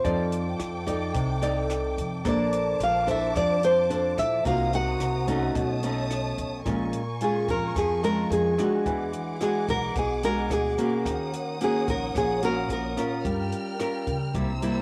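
Wistful and melancholic, this bossa nova excerpt from a longer piece sets an up-front, fingerpicked nylon-string guitar melody, with a faint finger squeak and a cassette-tape tinge, over a second classical guitar's accompaniment, woody pizzicato upright bass on gut strings, and a dry compact cocktail kit of hi-hat, punchy kick and rim click. A breathy, unsteady alto flute with vibrato drifts in the background until 6.3 seconds, while a lush bowed string section holds close, sustained chords throughout. From 6.7 seconds the melody guitar takes a solo over extended, shifting harmonies, all set in moderate booth ambience and captured at home on cassette.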